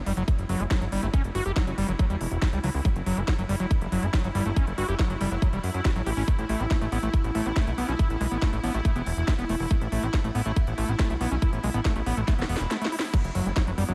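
A light reverb glazes this driving, hypnotic psychedelic trance passage, cut from a longer piece and set at 140 BPM in straight 4/4 in F# phrygian, its harmony moving from F#5 to A5 at 6.3 seconds and back at 13.1. A layered kit with a cracking snare, crisp hats and crash cymbal is soon joined by a tight, up-front electronic kick, both drum parts in a small room, while a fat, detuned sawtooth analog bass with a filter sweep holds the low end. Over them a squelchy, screaming acid riff with resonant filter plucks, distortion, chorus, delay and sidechain pumping cuts through a bright, morphing wavetable pad of sustained chords, and a drum fill arrives at 12.3 seconds.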